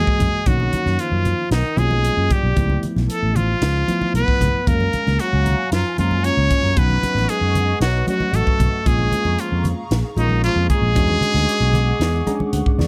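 Electric jazz fusion with a slick, driving feel, this short cut moves at 114 BPM in a straight 4/4 over chords such as Bmaj9, Db7alt and E13. A muted trumpet carries the melody up front, its straight mute giving a nasal, brilliant edge with light vibrato. A breathy trombone sits farther back on a second line, whispered and intimate with a roomy distance. A worn, slightly out-of-tune tine electric piano comps through light overdrive, and a growly fretless electric bass with subtle chorus sustains beneath, while a crisp kit with a high-tuned snare and punchy kick pumps in a small room and damped congas stay in the background. From 4.7 seconds an airy, detuned pad with chorus adds soft sustained chords up high, and the electric piano plays a fill from 12.0 seconds to the cut at 12.9 seconds, all in a dry sound.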